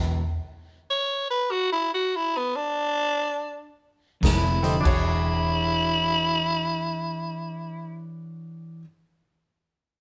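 A slightly broken-up electric guitar and a round, foam-muted electric bass strike a brief stop-time stab, then a raspy, growling tenor saxophone with vibrato takes an up-front jazz solo from 0.9 s; at 4.2 s the riff and bass return in this rollicking, laid-back electric blues shuffle as a swinging big-band drum kit with a punchy kick and medium-tuned snare plays briefly, and a brilliant baby grand piano with audible action noise adds short-sustained accompaniment in a moderate stone room.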